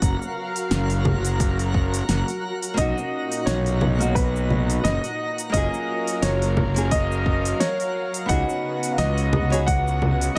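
This sunny, smooth sunset chillout excerpt opens at 87 BPM in F# major with a thick, detuned unison pad under chorus and shimmer reverb, a round, punchy fuzz bass with overdrive and tube saturation, a deep layered electronic kick, an up-front R&B kit of fat snare, metallic hats, congas and shaker with a 16th-note swing, and a twinkling granular texture sparkling high above. At 2.7 seconds a fingerpicked nylon-string guitar joins with 12-bit sampler grit, delay and shimmer reverb, and at 2.8 seconds a present grand piano with long sustain takes the melody through echoes and shimmer. The harmony moves from F#maj7 to Bmaj7 and back before settling on C#7sus4, all in a light digital ambience.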